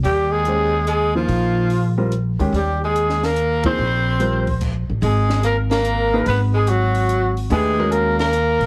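Searching and cool, this short modal jazz passage swings in 3/4 at 145 BPM, tuned slightly sharp to A4 = 441 Hz, and is cut from a longer piece. A growling trumpet carries the melody up front, raspy and gritty with vibrato, scooped notes and a soft attack, its tone set distant in plate reverb. Beneath it a bright, forceful tenor saxophone plays a second line with a punchy edge and its own vibrato. A woody pizzicato upright bass with steel strings sits close, a concert grand adds intimate accompaniment with audible action noise and deep lows, and a compact cocktail kit of kick, snare, hi-hat, ride and crash sounds dark and smooth, with a high-tuned snare and a rolled-off top. The band hits an accent at 3.6 s and stops briefly from 4.6 s before settling into G# minor at 5.0 s, all framed in a heavily compressed, radio-like sound with light reverb.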